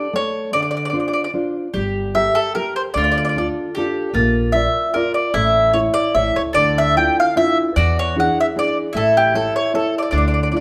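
A picked mandolin carries the melody up front, its doubled strings giving a round tone as it sings between G4 and G5 in this passionate, romantic excerpt of an Italian folk serenade. The piece sits in D minor at 150 BPM in 3/4, with a swung, rubato feel that lets the phrases breathe. A nylon-string guitar accompanies from 0.0 seconds, thumb-plucked with a dark, full-bodied classical depth and audible finger squeak. At 1.7 seconds a second mandolin enters with a bright supporting line in a narrower middle range, and a pizzicato upright bass with steel strings adds a woody low end. The harmony moves through minor colours such as Dm7 and Gmadd9 before Bb, E7 and A lean toward the dominant. A moderate recital hall reverb, with a decay of 1.4 seconds, surrounds the ensemble.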